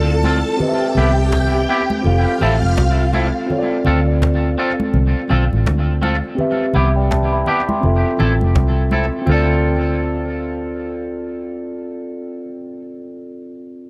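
Smooth and bittersweet, this lovers rock reggae excerpt sways in 4/4 with a swung sixteenth-note feel over a Dm7, Cmaj7 and Fmaj7 progression. A swirling, bright vintage string machine, coloured by phaser, ensemble chorus and tape echo, carries a second line at the start and stops at 3.5 seconds. A mellow tine electric piano sits up front with clean, direct accompaniment, while a dark, round, foam-muted fingered bass anchors the low end. Twangy electric guitar stabs, dressed in lush chorus and tape echo, punctuate the groove, and a woody cajon and soft-handed, ringing congas tick along in the background with touches of echo until about 9.2 and 9.6 seconds respectively. Light reverb and a small room ambience keep the sound intimate, and the electric piano rings on to close the passage at 13.9 seconds.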